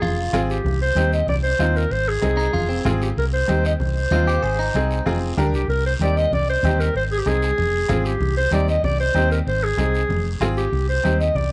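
A straight 4/4 cumbia groove at 191 BPM in C minor drives this passionate, danceable fragment, where a roomy, distant-sounding clarinet carries the melody up front over a round, hollow-body electric bass, raspy guiro, bright thin-skinned congas set back in the mix, and a woody, brilliant upright piano, while a clean, scooped electric guitar with spring reverb adds a second line only until 5.2 seconds, all circling Fm, Cm and Ab within a dark, lightly reverberant production.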